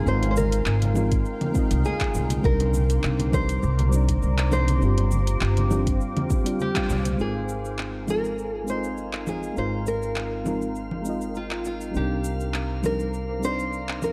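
Sunset chillout at 101 BPM with a lightly swung sixteenth feel, wistful and smooth, cut from a longer piece and moving through Ab69, Cm9 and G7sus4 chords. A fingerpicked nylon-string guitar carries the melody with tape echo over a soft, round FM electric piano with chorus, a shimmering, ethereal pad, and a woody, growly upright bass sitting up front. A deep house kit with metallic hats, cabasa, congas and handclaps runs throughout, joined by distant acoustic congas and bongos until 7.2 s and a deep electronic kick from 1.1 to 6.9 s. After a band accent at 6.8 s, a glassy, drifting harmonics texture enters quietly in the background at 7.7 s, all within a dark production with light reverb.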